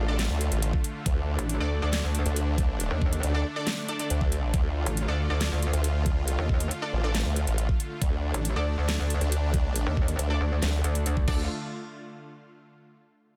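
A menacing, up-front formant-sweep wobble bass drives this heavy wobble dubstep drop at 138 BPM in a half-time feel in D phrygian, joined at 1.4 seconds by an aggressive, metallic FM wobble bass, both overdriven and chorused, while an overdriven knocking electronic kick enters at 0.7 seconds under a dubstep kit of huge snare, metallic hats, handclaps and crash, with a lush, detuned supersaw pad pumping beneath and bright, punchy orchestra-hit-like stabs ringing through built-in reverb and digital delay, all in a dense, heavily limited mix cut from a longer piece.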